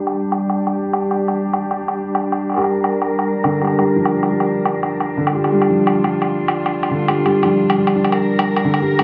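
This excerpt from a longer piece opens on a studio cello section holding sustained chords in G minor, its bowed tone soft in attack and lightly touched with vibrato, roughened by a vintage 12-bit sampler grit. Almost at once an electronic, overdriven woodblock takes the drum role, its produced sound carrying the character of a small room. The track is half-time drum and bass at 173 BPM in 4/4, with a slight swing on the sixteenths, and the mood is spacious yet tense. At 2.6 seconds a felt-muted upright piano enters with arpeggios, mellow and boxy, its action noise audible and its notes trailed by delay. A moderate plate reverb and a filter sweep running through the whole passage frame the bright, 1980s-style digital production.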